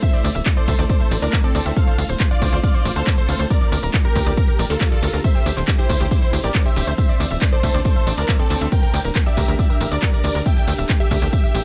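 This uplifting trance excerpt opens at once with a huge, euphoric supersaw lead carrying the melody. A catchy, full-bodied unison lead plays a second line in the background, and a heavy, layered electronic kick drum sits up front beside an analog drum machine's handclaps, hi-hat, ride cymbal and tambourine. A tight, nasal sequencer bass joins at 0.2 seconds, driving and up front with sidechain pumping. Both leads carry phaser, pumping and dub echo, while a round, vintage analog pluck with chorus, pumping and echo spins arpeggios in the background. Beneath them a shimmering, ethereal pad holds very quiet, mellow chords moving from Am/D through F/D and Gmadd9/D to Dsus2 and Edim/D. The mood is emotional and driving in a dry mix with little reverb, and the kick stops at 11.4 seconds, just before the cut.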